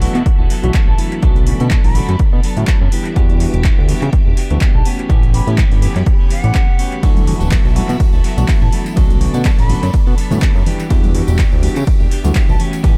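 This funky, joyful excerpt of filtered disco house at 124 BPM in 4/4 with a light 16th-note swing opens on a bell-like tine electric piano with phaser, dub echo and sidechain pumping, a swirling phased string machine carrying gritty 12-bit chords in the background, a dark, picked clean electric guitar riff and a fat, saturated analog bass, both pumping with the sidechain, plus an overdriven analog drum machine of handclaps, pumping hi-hat and ride cymbal; a punchy electronic kick arrives up front at 0.3 s, a distant silver concert flute melody with vibrato and dub echo floats in at 0.9 s, and bright, close tambourine and congas join at 7.0 s, all moving over D69, Bm7, Em7 and A9 chords in an echo-heavy mix with little reverb.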